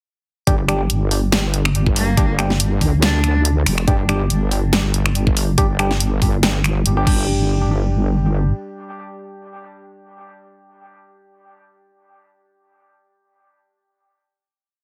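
A saturated, detuned wobble bass with changing wobble speed leads this brooding, cavernous deep dubstep piece at 141 BPM in a half-time feel, driven by a knocking electronic kick and a drum kit of huge snare, finger snaps, hi-hat and crash, while hollow, organ-like stabs move one G5 shape in parallel through chorus, phaser and dub echo, and a rich bowed cello adds short vibrato phrases in the background, all in a heavily compressed radio sound until the drums fall away around 7.2 seconds and the bass by 8.5 seconds, leaving the stabs to ring on through the final hit to 11.9 seconds.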